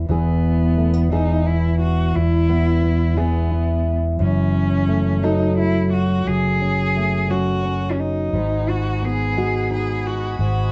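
A thumb-plucked nylon-string guitar, deep and up front, opens this tender, hopeful acoustic folk-pop ballad in E major with a round, amped fingered electric bass, moving at a slow 58 BPM in a straight 6/8 as the chords pass from E to F#m7 and G#m7. A rich, smooth bowed cello carries the melody with even vibrato, and at 8.3 seconds a soft-attacked, floating string section enters in the background with pure sul tasto chords. The whole is bathed in wet studio reverb, heard from further back in the room with a dulled top, in this short cut from a longer piece.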